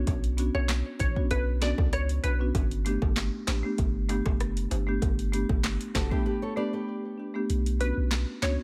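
A small-room ambience frames this tough, bouncy dancehall excerpt in B minor at 97 BPM in a straight 4/4, cut from a longer piece. Up front, an electronic afro-pop kit pairs a deep kick and sharp snare with metallic hi-hats, handclaps and rim clicks, all carrying a warm, tape-like character. A punchy sine sub bass with a pitch-drop attack sits alongside, and a woody marimba on rosewood bars comps Bmadd9 and Gadd9 chords, while tight, high-tuned bongos played with hard hands add a vintage, band-limited snap beneath. A crystalline wavetable pluck carries the melody, its detuned unison and ring modulation giving a warbling, digital shimmer through chorus and delay with a filter sweep. A fingerpicked nylon-string guitar brings classical arpeggios with delay from 5.9 s, a break arrives at 6.3 s, and the kick drops out at 7.5 s, shortly before the pluck returns over the final bars.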